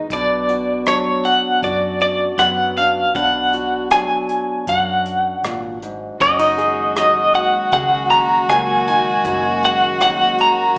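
A full-bodied, fingerpicked jumbo acoustic guitar with slapback echo opens this intimate, nostalgic folk-pop ballad at 79 BPM, joined almost at once by an up-front, slightly broken-up electric guitar carrying the melody with tremolo and slapback, a dark, round muted bass in the background, and brushed drums with a punchy kick, hi-hat and rim click. At 6.2 seconds the harmony moves from Bm to F#69 as a boxy, nasal cello enters with an airy sul tasto bow and light vibrato, followed at 6.5 seconds by a hollow, flute-like pad with chorus sitting low in the mix. The recording sounds like a live club gig heard through the venue's PA, with small-speaker coloring and light reverb, in this excerpt cut from a longer piece.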